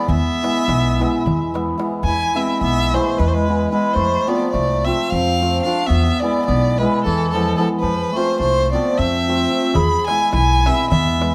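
A straight 7/8 pulse at 217 BPM, counted in eighths, drives this Balkan wedding-band folk piece, cut from a longer performance, in E Phrygian dominant with a bittersweet, virtuosic mood. Up front, a single bowed violin carries the melody with rich, focused vibrato and a smooth top, while a clear clarinet plays a second line in classical style from a more distant, roomy position. A hammered dulcimer fills the accompaniment with shimmering, ringing tones, and a pizzicato upright bass with steel strings gives a woody, thumpy foundation. A small, high clay-shell darbuka, played with soft hands and sounding close and dry, sits in the background from 0.1 to 2.0 seconds and returns at 9.8 seconds. The harmony alternates between E and F, and the band plays live together in a stone room whose moderate reverb lends the ensemble a natural, lively depth.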